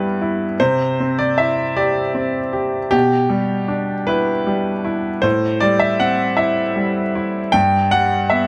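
Neoclassical minimalist piano in G major, this brief fragment of a longer piece moves at a slow 52 BPM in 6/8 with a rubato feel and an intimate, tender mood. A clear baby grand piano plays alone throughout the 8.5 seconds, spanning G2 to G5. Its tone is natural and up front, with audible action noise that brings the listener close to the instrument. The harmony drifts from G6 through Cadd9, G6/B and Am7 before settling back on G6 at 7.5 seconds. Light reverb gives the sound a gentle sense of space while keeping the piano close and present.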